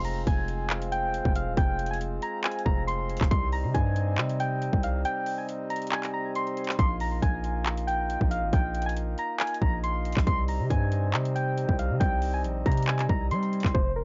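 A brooding, eerie half-time trap beat at 138 BPM opens with a punchy, hard-hitting 808-style bass and an up-front electronic trap kit of hard-clipped kick, metallic hi-hats and handclaps under a soft, round electric-piano-like synth melody treated with chorus, tremolo, tape echo and plate reverb, while a reedy, breathing pedal harmonium holds dark sustained chords through an Fm, Cm and Bbsus4 progression, all captured with a gritty, dry cassette-tape character, a break at 5.0 to 6.8 seconds, and the hi-hats cutting out at 13.7 seconds in this cut from a longer piece.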